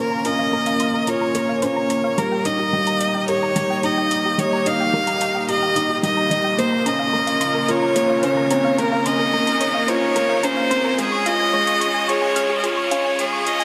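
Piano and strings electronica with a moving, cinematic mood, this cut from a longer piece is one long build-up under a filter sweep, set in a lush hall with shimmer reverb on the melodic parts. A clear, close violin with vibrato carries the melody up front, over a thick, detuned unison pad with chorus and phaser, a soft round pluck playing arpeggios in the background, and a felt-muted upright piano riff that sounds dark and intimate, its action noise audible. Overdriven metallic electronic hi-hats come in at 0.2 s, and a very quiet riser joins at 5.7 s.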